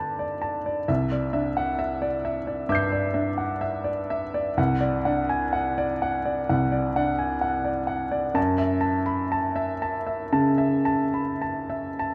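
Played with free rubato in 4/4 at a slow 50-67 BPM, this hazy, dreamy impressionist solo piano fragment is cut from a longer piece and unfolds over 12.1 seconds. A clear, intimate baby grand sits up front, spanning C2 to C7 with audible action noise, as its harmony moves from Gadd9 to Cadd9, then D/C at 4.6 seconds and F#m7 at 8.4 seconds. A moderate concert hall reverb with a 2.0-second decay surrounds the instrument, and the production leans dark and warm.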